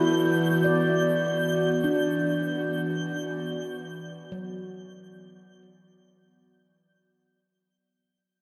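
Floating in free time, this short ambient passage, cut from a longer piece, feels reflective and spacious. An airy, breathy pad sits up front holding sustained chords, its detuned, mellow tone softened by chorus and a slow attack with a long release. A handpan of stainless steel rings out meditative arpeggios through delay, its sharp finger strokes giving a bright edge until it stops at 6.5 seconds. High above, a twinkling granular texture adds a sparkling, octave-up shimmer, bathed in its own built-in reverb. The whole passage sits in a cathedral-like reverb with a long tail and fades out across its full 7.2 seconds.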